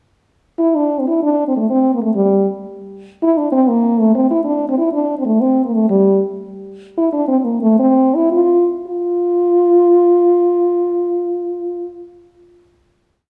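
Set in 6/8 at roughly 100-130 BPM counted in dotted quarters, with a straight feel, this short Italian folk piece opens with a brief pickup bar before settling into its single main section in F major. A solo French horn carries the whole tune, entering at 0.6 s and singing motif-based song phrases between G3 and F4 in a mellow, classical style with a light vibrato. The mood is sunny and lively, even as the tempo slows from 6.8 s to 8.9 s, easing into a final note that begins at 8.9 s. Close-miked and placed up front, the horn sits within a moderate recital hall reverb and a touch of small room ambience, its tone mellow. The instrument is tuned slightly below standard pitch, to A4 = 439 Hz, and the complete piece lasts only about twelve seconds.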